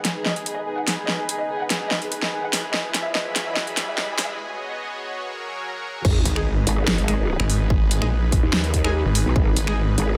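Heavy wobble dubstep in G# minor at 145 BPM with a half-time feel, this menacing, chaotic excerpt opens with a dark, bowed violin section carrying the melody with vibrato and portamento over a lush, airy supersaw pad under a filter sweep and sidechain pumping, a dubstep kit with a huge snare and metallic hats, and a riser and sub drop in the background, moving through G#m, E, B6 and F#add9 changes. After a break from 4.4 to 6.0 seconds, the drop hits on G#m with a punchy electronic kick, a growling, wobbling, saturated growl bass, a snarling distorted saw bass and bright, bold orchestra-hit-like synth stabs.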